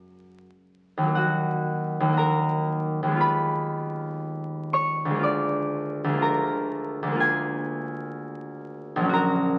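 A ringing, fingerpicked concert harp plays alone and up front across a range from A#1 to D6, moving through dreamy, graceful harmony from F# to Ebm, then Fm7b5/Eb and Bb7/D at 5.2 seconds. This brief classical fragment, cut from a longer piece, drifts in a rubato 4/4 at roughly 53-64 BPM, tuned to A4 = 438 Hz. The sound carries the crackle of a very old 78 rpm record, set in a stone room's reverb.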